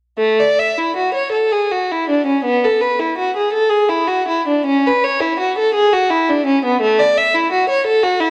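Heard through worn, warbling cassette tape with a warbly pitch drift and a moderate stage reverb, this brief fragment of a flowing, radiant baroque-style suite movement in A major features a single up-front bowed violin with a rich, smooth, even tone and vibrato, moving with rubato through 6/8 at 54 dotted-quarter beats per minute between A3 and E5 from 0.2 to 8.3 seconds.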